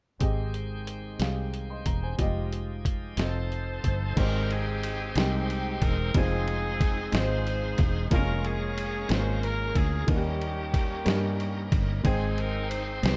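Soulful and uplifting, this slow gospel excerpt moves at 61 BPM in a straight 6/8 feel in Ab major, with a dark, close-sounding production that carries little reverb. A woody, polished upright piano with short sustain plays the accompaniment from 0.2 seconds, while a bright, shouting tonewheel organ holds full sustained chords through a slow rotary speaker with light overdrive and audible key click. Up front, a round, foam-muted fingered electric bass anchors the low end beside a compressed, pitched-down, sampler-style drum kit with a thumpy kick, a medium-tuned snare, hi-hat, ride and crash. At 3.2 seconds an edgy, vintage saxophone section enters with the melody, its ensemble vibrato giving it a pop-style sheen. The harmony moves from Abmaj7 through Fm9, F7, Fm7, Bbm7/F and Eb7 before settling back on Abmaj7, and the passage is cut from a longer piece, running to 13.2 seconds.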